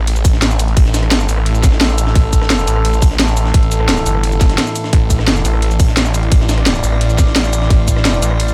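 A snarling, growling distorted saw bass sits up front in this tense, dark technical drum and bass excerpt, driven by a tight electronic kick and a cracking drum and bass kit with cabasa, hi-hat and rim click, while a very quiet, gritty, pitched-up breakbeat kit with ride cymbal and a high-tuned snare sits underneath and an eerie, metallic FM drone with chorus and reverb holds slow-attack chords from 0.6 seconds in an otherwise dry mix.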